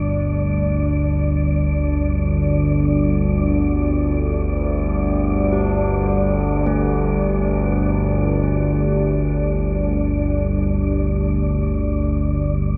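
Dark and ominous, this dark ambient drone unfolds in free time, tuned to A4 = 438 Hz, and is cut from a longer piece, running 12.8 seconds. An up-front analog drone anchors the low end from G1 to D2, its resonant sawtooth and pulse-wave tones evolving under chorus. Above it, a deep, moody analog pad holds sustained chords between G3 and D5, detuned and given a sub octave, colored by chorus and phaser. A faint, breathy wind-like noise texture hovers on D5 with its own built-in reverb, fading in across the whole passage. At 5.5 seconds a quartz singing bowl enters with ringing, meditative arpeggios from A3 to G4, struck with a wooden striker and trailed by delay, its pure tone showing slow beating. The whole sits in a vast, echoing space with an 8.0-second reverb tail.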